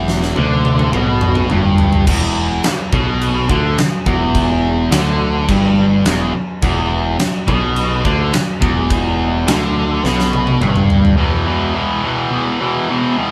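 Powerful and anthemic, this short hard rock excerpt at 105 BPM in 4/4 opens on an E5 chord with a drum fill and centres on a sludgy, double-tracked overdriven guitar riff up front, backed by a bright, growly picked electric bass and a huge acoustic arena kit with a fat snare and punchy kick that fills again at 10.0 seconds before the guitar carries on alone from 11.2 seconds, all captured as a band playing live in one room with moderate reverb and some lossy compression artefacts.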